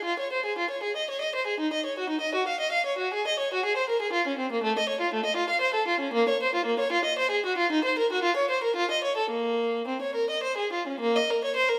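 In a flexible, rubato triple metre, a solo violin with a rich, focused, vibrato tone plays up front through the whole 11.8-second extract of a solemn, grave baroque-style suite movement, heard in a moderate recital hall reverb.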